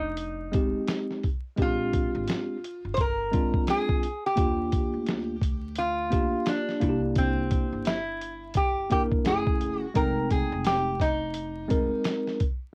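A swung 86 BPM groove in 4/4 comes from a woody pizzicato upright bass, joined by a gritty, compressed sampler-style drum kit with a thumpy kick and fat snare in this smoky, nocturnal jazz-hop cut, taken from a longer piece in F dorian. Up front, a bright, nasal metal-body resonator slide guitar, played with fingerpicks, carries the melody, while a worn, slightly out-of-tune tine electric piano enters at 0.5 seconds with mellow chords moving from Fm9 through Bb13, Ebmaj9 and C9 to a brief Gbm9 before returning to Fm9. The guitar, drums and piano carry a tape-worn cassette coloring, and the whole home-recorded sound sits in light reverb with vinyl crackle.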